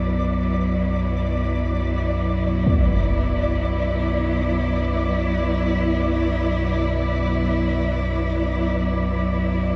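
A cavernous spring-reverb wash soaks this dark ambient drone, which drifts in free time and is cut from a longer piece. Underneath, a deep, ominous synth drone of triangle and sawtooth tones rumbles low, fading in slowly and ringing on through a lush chorus and its own reverb. Over it, a rich bowed cello section holds sustained chords on a single minor harmony, smooth and even with vibrato, and carries a shimmer reverb. A quieter granular layer flickers high above, grainy and detuned, its slow-blooming tone trailed by both built-in and shimmer reverb. At 2.7 seconds a huge, bright impact strikes, muffled by a low-pass filter, before the held sounds carry on to the close at 9.8 seconds.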